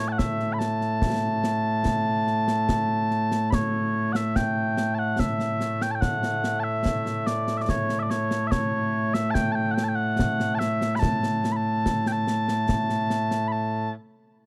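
Close and dry, this recording has the feel of a 1970s studio session, with studio reverb applied. It is Scottish traditional pipe music in A mixolydian, set at a stately 72 BPM in 3/4 with a straight feel, and its mood is ceremonial and proud. Mellow small bagpipes carry the melody up front as a sweet, continuous solo line reaching from A2 to B5, sounding from the opening moment until 13.9 seconds. Just behind them, an acoustic concert snare drum and concert bass drum, with dark cymbals, enter at 0.2 seconds, keep a lower profile and sound intimate and unadorned. The tune moves into a new section at 3.5 seconds, and the passage is cut from a longer piece.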